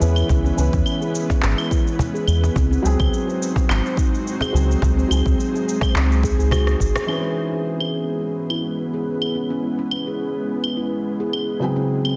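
A deep, round analog bass sits up front in this meditative, mystical slice of organic downtempo, moving at 106 BPM in C# minor with a light 16th-note swing over chords that alternate between C#m7 and G#7. Around it, a soft, felt-muted upright piano with audible action noise and an ethereal, detuned pad with chorus and built-in reverb both pump against the beat. A steel tongue drum played with rubber mallets rings out pure arpeggios through tape echo, while an overdriven electronic kick and electronic cabasa, claves, handclaps and rim click, all re-recorded in a large room, mix with a snappy, close-miked cajon. During a drum fill, the bass and kick drop out on a band accent at 6.9 seconds. From 7.1 seconds a filter sweep runs across the pad, and a very quiet quartz singing bowl adds a slowly beating G#4. A lush hall reverb and a dense, heavily limited master wrap the piece in a hazy, immersive glow.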